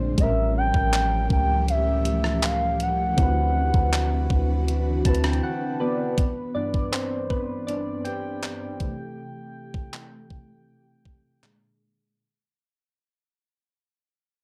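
Soft, round electric-piano-like synth keys open this tender, smooth contemporary R&B excerpt alongside an ethereal, airy pad with a slow attack and ensemble chorus, and a deep, boomy 808-style bass with a dark tube-saturated edge. A crisp, thumpy 8-bit drum machine with a tape-warmed, sampler-style character sets out handclaps, hi-hat, kick and rim click, while a mellow gliding portamento lead sings a short, sustained melody high above with vibrato and chorus. The keys carry chorus and phaser and step forward with a fill as the bass drops out at 5.4 seconds for a brief break. From 6.2 seconds the keys take the spotlight over chords such as G6 and C6 while the piece fades out. The overall sound is dry and gritty, with most instruments placed up front.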